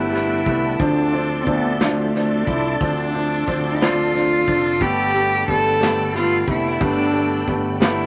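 Six-eight pop ballad at 60 BPM, dramatic and melancholic, cut from a longer piece. An intimate, up-front cello sings the melody with light vibrato and an airy sul tasto bow, over a felt-muted upright piano whose mellow tone carries audible action noise, a reedy tonewheel organ holding sustained chords through chorus vibrato and a slow rotary speaker, and a punchy fretless electric bass. A dark, smooth brush kit of hi-hat, tight kick and snare plays from 0.1 to 8.0 seconds, all set in a small room with a moderate reverb and a layer of vinyl crackle as the harmony moves from Gadd9 to Dm7 and back.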